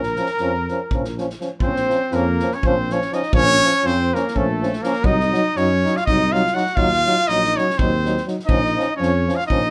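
A fast 7/8 pulse at 244 eighth-note beats drives this restless, virtuosic Balkan brass band fragment in B-flat harmonic minor, cut from a longer piece. The trumpet sits up front with the melody, played with light vibrato and a soft attack, over a close-miked flugelhorn second line and a dark, smooth-topped tuba bass. A punchy euphonium and a distant, roomy trombone in the background enter at 0.2 seconds as accompaniment, while a tight kick and medium-tuned snare, played with bundle sticks, give the percussion an acoustic studio-room feel. The harmony moves from B-flat minor through C diminished and E-flat minor before returning home at 8.5 seconds, all in a moderate studio reverb.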